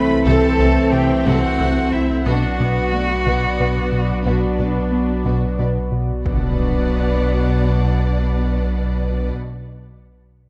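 Hybrid orchestral and electronic film score in B phrygian, brooding and futuristic, moving at a slow 60 BPM in 6/8 as Am/C gives way to Bm. A warm solo cello with vibrato and delay carries the melody over lush bowed violin, viola, cello and double bass sections, along with a dark trombone section and mellow French horns in sustained chords and a shimmering, chorused pulse-width pad, all set in a moderate scoring-stage reverb. Underneath sit a clean sine sub bass and a rubbery, bouncy square-wave riff that stops at 6.1 s, while a squelchy, resonant blip pluck adds quiet arpeggios until 5.8 s, and a huge, bright impact hits at 6.3 s.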